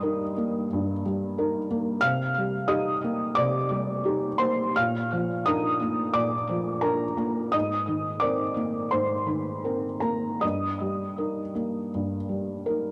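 Cassette warmth and a light reverb frame this intimate home recording, a short cut from a longer neoclassical minimalist piece in E-flat major at about 86 BPM, its beats uneven and pulled with rubato. A felt-muted upright piano plays solo from start to finish, sitting up front with a soft, mellow tone, short sustain and audible action noise, colored by cassette tape character and tape echo. Its hopeful progression moves from Eb/G through Cm7, Bb and Abadd9 before settling back on Eb/G at 10.4 seconds.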